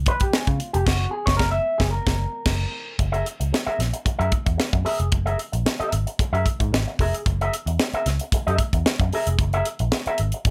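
An up-front electric guitar, bright and compressed through an envelope filter, provides the accompaniment in this playful funk cut at 113 BPM, with a clean guitar solo and band accents carrying the opening until a new section begins at 3.0 s. Beneath it, a vintage muted picked bass adds a dark, round, foam-muted tone with tube saturation, while a crisp fusion kit brings a punchy kick, a high-tuned snare, hi-hat and crash in an airy studio room. The harmony moves from Db7 to Gb and then Gb9 under light reverb, in a straight 4/4 feel taken from a longer piece.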